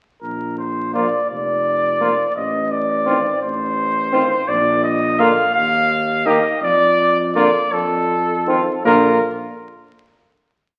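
A warm, up-front trumpet with vibrato and a soft attack sings the melody of this short, noble classical brass quintet piece in Bb major, moving at a slow 56 BPM in 6/8. A smooth-topped tuba starts with it at 0.2 s, holding the bass on the beats and in sustained notes. From 0.9 s a clear second trumpet, the French horn and a mellow background euphonium add short accented chords and sustained chords before a final chord at 8.8 s, all heard through a wet stone-room reverb and the crackle of a very old 78 rpm record.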